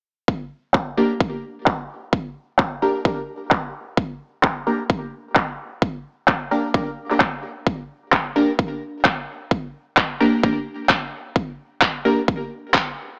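A nasal, band-passed sawtooth chord stab, detuned and ring-modulated with phaser, lush chorus, cassette tape, sidechain pumping and digital delay, struts over a punchy layered kick and overdriven electronic handclaps in this aggressive, swaggering bass house excerpt at 130 BPM in G minor, swung on the 16ths and sitting on a Gm chord, with filter sweeps running across both drums and stab from 0.3 seconds through a digital-ambience mix with light reverb and a small-speaker sound.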